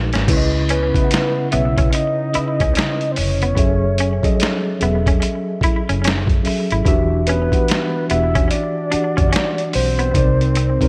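A big, arena-like concert hall reverb surrounds this introspective, smooth neo-soul R&B excerpt at 73 BPM in C# minor, where a gritty, pitched-down boom bap sampler kit with a thumpy kick opens on a drum fill beneath a dark, foam-muted fingered bass and an up-front mellow tine electric piano moving through C#m9, F#m9, Em9 and Cm9, while a hollow-body semi-hollow guitar with slapback echo adds a quiet second line and a soft, octave-layered synth lead with chorus and vibrato carries the melody from 0.7 seconds.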